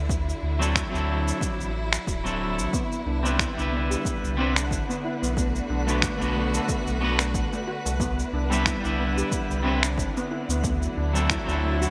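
This blissful sunset chillout excerpt opens with a clear, bowed studio string section holding vibrato chords over a deep, round sub bass, joined at once by a punchy, overdriven electronic kick and gritty, sampler-style shaker and finger snaps with a light swing. At 0.6 seconds a twangy electric guitar at the edge of break-up enters up front with delay, a shimmering steel pan struck with hard rubber sticks adds delayed arpeggios from 2.7 seconds, and a twinkling granular texture settles in the background at 4.0 seconds. The chords drift between D9, Cmaj9 and Bm7, while a lush hall reverb and bright 1980s-style digital production keep the mood smooth.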